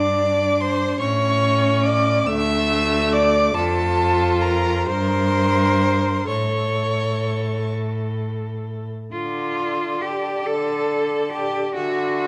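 Elegiac and yearning, this short cut from a slow romantic string-quartet movement in D minor sways in a rubato 6/8 at 40-50 BPM, with a clear, focused violin singing the high melody over a rich second violin, a dark, airy-bowed viola and an up-front cello bass, all four playing throughout in a moderate recital-hall reverb on worn cassette tape whose warbly pitch drift lends a faded, aching quality as the harmony turns from Gsus4 through A, F and Gm to Dm and a closing E7/D at 11.8 seconds.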